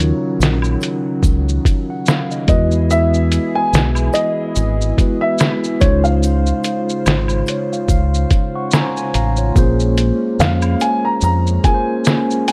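A thumpy, muffled sampler-style drum kit and a round, punchy dub bass sit up front in this cosy, mellow lo-fi hip hop excerpt at 72 BPM in Db major, carrying a dark, woody upright piano melody, a clean tine electric piano with a fill from 7.1 to 9.6 seconds, a detuned, chorused analog pad, and background maracas and woodblock in light reverb with a faint mains hum.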